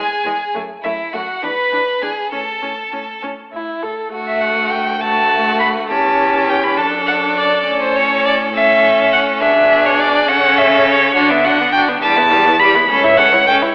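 Graceful and lively, this quick classical-period movement for string quartet in 6/8 moves from its opening phrase into a new passage at 4.1 s. Up front, a rich first violin sings the melody with vibrato, portamento and expressive soft attacks, while a clear, smooth second violin carries the second line. A warm viola supplies the accompaniment and a focused cello holds the bass, all heard through a recital hall's reverb and a telephone-like sound in this fragment of a longer piece.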